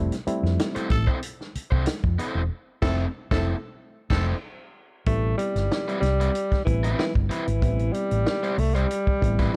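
A straight 4/4 funk groove at 94 BPM in A minor sets a hypnotic, cool mood, with a round hollow-body fingered bass and a tight, dark-cymbaled vintage drum kit up front, barky, lightly overdriven reed electric piano stabs and crunchy picked guitar accompaniment over Fmaj7, a raspy tenor saxophone second line from 0.9 to 4.3 seconds while the band accents from 2.5 seconds, then a breathy, scooping alto saxophone melody from 5.1 seconds as the harmony moves to Am9, closing on an electric piano fill in a dry, dark production.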